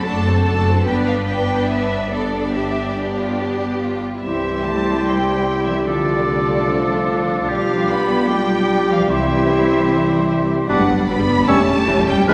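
Heard from further back in a reverberant scoring stage, this cut from a longer piece is a fast, dramatic romantic movement for symphony orchestra, restless and stormy in mood. The strings open together: a dark, expressive violin section carries the melody with vibrato, a second violin section adds a rich, focused line in the background, violas supply intense accompaniment, and lush cellos and clear double basses hold down the bass. At 4.2 seconds the woodwinds and brass join, with a close-miked oboe and a smooth clarinet taking up second lines, an airy metal flute singing high above them, and a distant French horn section laying down roomy sustained chords. A mellow bassoon with a soft attack enters at 4.3 seconds as accompaniment. The harmony passes through chords such as G, C and Dm7/C before closing on C#dim/E.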